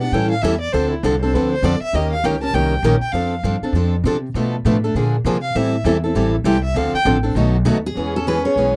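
A dry, close studio sound with light reverb frames this charming, lively snippet of acoustic string swing in the jazz manouche style: an expressive bowed violin with vibrato and portamento solos over a picked steel-string acoustic guitar and a woody, thumpy pizzicato upright bass on gut strings up front, a plugged-in picked guitar sits in the background from 0.1 seconds, and a bright lead guitar with finger squeak slips in at 7.9 seconds as the harmony moves from A7 through Bm7b5 to E6.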